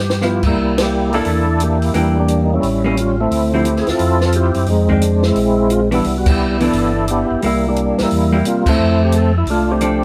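A gritty, overdriven tonewheel organ carries the melody up front in this soulful, bluesy soul jazz organ trio excerpt. Its percussive second-harmonic percussion and chorus vibrato turn through a slow rotary speaker. Beneath it, a second tonewheel organ holds the bass line, mellow and round with a touch of key click, also spinning through a slow rotary. A clean, compressed hollow-body electric guitar adds picked accompaniment, while a compact cocktail drum kit swings along, dry and natural, with a punchy kick, high-tuned snare and dark cymbals. The drums open with a fill, and the band hits accents at 0.7, 6.2 and 8.6 seconds as the harmony moves through rich extended chords such as C13, Dm9 and Cmaj9 before arriving on F6. Light reverb captures the group playing live together in one room.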